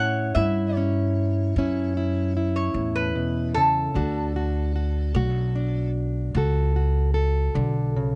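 A metallic, nasal lap resonator guitar played with fingerpicks and slide carries the melody until 5.9 s in this laid-back, rollicking acoustic country blues fragment in 12/8, over a full-bodied fingerpicked jumbo acoustic guitar with old strings and a thumpy, woody pizzicato upright bass on gut strings, all close and dry as the harmony moves from A to D at 3.9 s.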